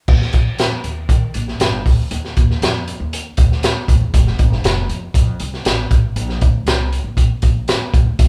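Uptempo 1960s-style soul with a joyful, uplifting mood, cut from a longer piece, where a crunchy, gritty breakbeat drum kit with dark cymbals, a tight kick and a saturated, up-front sound plays alongside a woody, growly pizzicato upright bass, the band playing live in one room under light reverb.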